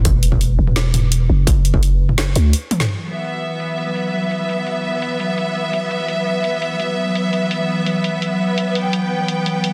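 A dense, heavily limited mix in a lush hall opens this tense, heavy half-time drum and bass excerpt at 169 BPM in E minor, where a growling, buzzy 808-style bass and a distorted electronic kick punch up front over woody snare, bright hats and overdriven toms while a mellow, chorused gated texture pulses throughout. The bass drops out at 2.5 seconds, and after a brief break and drum fill, bright, bowed strings enter with vibrato at 2.9 seconds, pumping as a filter sweep runs over the drums.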